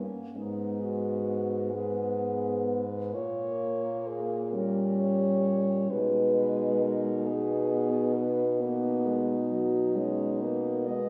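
In a rubato 12/8 at 44 dotted-quarter beats per minute, this melancholic, elegiac classical fragment for horn quartet in G# minor sets a dark, smooth-topped lead horn over a mellow second line with light vibrato, a distant, roomy accompanying horn and a warm, up-front bass horn, all moving from G#m through Gdim/Bb to G#m/B within a recital hall's wet 1.7-second reverb.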